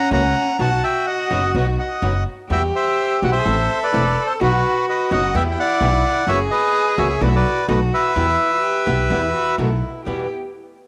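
This short piece of a longer tango has the sound of a home cassette recording with light reverb, and its mood is melancholic and tense. A reedy, mid-forward bandoneon carries the melody up front, falling silent at 9.6 seconds just before the other parts close at 10.3. Beneath it a single bowed cello plays a second line with a rich, nasal, slightly boxy tone, soft attacks, vibrato and portamento. A fingerpicked nylon-string guitar with fresh strings gives a small accompaniment, while a woody, thumpy upright bass with steel strings, played pizzicato, sits up front. A lush symphonic string section adds very quiet bowed stabs with expressive vibrato, and the rubato feel carries harmony that moves through F#7, B7sus4 and B7 before settling on Em.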